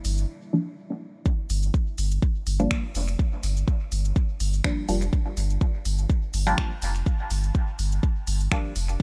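This dub techno piece is cut from a longer track. It opens on a round, sine-toned sub bass moving between F1 and G1, with tube saturation and sidechain pumping. Beneath it sits a smooth deep house kit of finger snaps, hi-hat and shaker, set low in the mix and trailed by dub echo. A break runs from 0.3 to 1.3 seconds, and a filter sweep works on the synth stab. The muted, dark sawtooth chord stab arrives at 0.5 seconds, voiced from F3 to D4 on a Gm7 in G dorian, with a filter pluck, short decay, phaser, pumping and dub echo. At 1.3 seconds a deep, up-front electronic kick anchors the 124 BPM groove, lightly swung at 54% on the sixteenths, and sets up a meditative, hypnotic pulse in a dry space.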